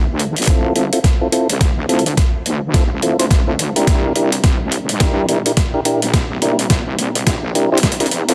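A heavy, detuned wobble bass opens this gritty, playful glitch hop build-up, soon joined by a pitched-down boom bap kit with a high-tuned snare and hi-hats running a drum fill, a thumpy, overdriven electronic kick sitting up front, clicky rotary-speaker tonewheel organ stabs under a filter sweep and dub echo, and a very quiet, moody analog pad entering at 1.4 seconds.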